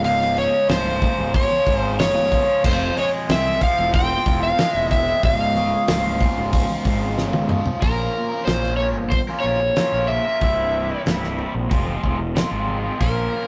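Psychedelic rock with a trippy, dark mood at 93 BPM, this excerpt sets an up-front, dark overdriven slide guitar melody over a bright, double-tracked picked electric guitar riff with phaser, a round, punchy fuzz bass, a dry, damped 70s drum kit with a fat snare and tight kick, and very quiet low-tuned congas, all in a rough rehearsal-room sound with tube saturation and stone room reverb, moving through Db, Fm and Bbm chords with a drum fill at 7.2 seconds leading into a new section at 7.8 seconds.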